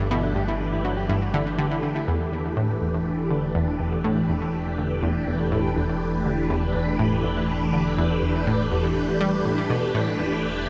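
A swirling, vintage phased string machine, up front with ensemble chorus and phaser, holds sustained chords that move from G to E minor at 2.1 seconds in this hypnotic, expansive piece of ambient, sequencer-driven space music at 122 BPM, over a fat, thick analog bass, a bright, detuned analog pluck riff with chorus and delay, and a dark, clean electric guitar whose delayed arpeggios sit in the background only until 2.0 seconds, the whole mix soaked in a huge, dreamy reverb.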